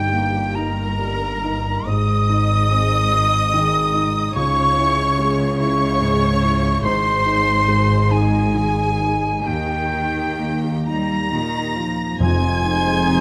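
A pure, up-front silver flute shares a second line with a rich, vibrato-laden violin section over a clear viola section, deep-voiced grand piano, ringing fingerpicked harp, a lush cello section and a smooth double bass section in this moving, sorrowful cinematic piece in Ab major, a rubato 6/8 at roughly 42-49 BPM, where the violins rise to a high melody at 10.9 s and a mellow clarinet, an oboe, a soft French horn section and articulate hard-mallet timpani join at 12.2 s, set in a moderate scoring stage reverb.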